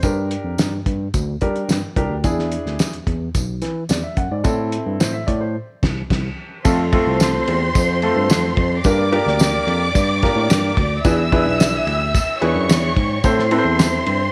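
A woody upright piano, a barky tine electric piano carrying the bass line and a cloth-damped, thuddy drum kit with a fat snare and dark cymbals open this joyful, uptempo 1960s-style soul piece at 109 BPM in F major, with a jingly, dry tambourine sitting lower in the mix. After a band accent from 5.6 to 6.7 seconds, a lush, bowed studio string section enters with a dark, soft-attacked sul tasto tone and vibrato for the second line. A moderate echo chamber reverb with a small room ambience gives the uplifting performance an intimate, vintage feel.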